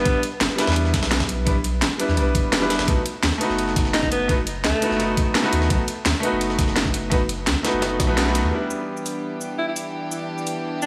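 A brilliant, intimate grand piano sits up front with audible action noise, long sustain and digital delay, while a punchy, forceful alto saxophone with vibrato and tape echo adds short solo phrases to this soulful, dreamy liquid drum and bass excerpt. Underneath, a round, mellow sine sub bass joins a knocking, overdriven electronic kick, a drum and bass kit with a cracking snare, bright hats and shaker, and a gritty, compressed breakbeat kit in the background with filtered cymbals and a high-tuned snare, all in a light reverb. The kick drops out at 8.2 s on a band accent, and at 8.5 s a rich, floating string section enters with soft, bowed sustained chords as the sub bass stops.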